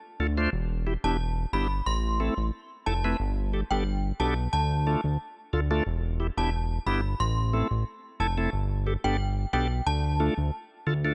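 A straight 4/4 dancehall groove at 90 BPM in A minor sets a tough, sultry mood, built on a fat, detuned sawtooth bass with a wave-folded edge and a filter sweep, sitting up front beside a reedy tonewheel organ with audible key click and slow rotary speaker, both entering at 0.2 seconds. At 1.0 seconds an inharmonic FM synth chime takes the melody high above, ringing and warbling through ensemble chorus and tremolo before decaying with a long release by 10.3 seconds. The harmony cycles through Dm, Em7, Am and Gadd9 in a dry, gritty recording with little reverb, cut from a longer piece.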